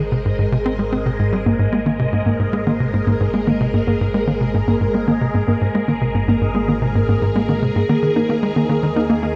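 A swirling, vintage string machine sits up front, holding bright sustained chords through an ensemble chorus, phaser and shimmer reverb in this hypnotic, mysterious stretch of ambient, sequencer-driven space music cut from a longer piece. Beneath it, a tight, punchy sequencer bass drives a decaying sawtooth-and-square riff through delay. An evolving analog drone with pulse-width modulation and chorus hums low and warbles warmly. A pulsing, tempo-synced gated texture of detuned triangle tones glimmers in the background, bathed in its own reverb and shimmer. From 1.5 seconds a warbly, dusty, lo-fi pluck adds mellow arpeggios through chorus and delay, and the harmony moves from Abadd9 to Ebsus4 at 7.9 seconds, all within a dark production under a moderate plate reverb.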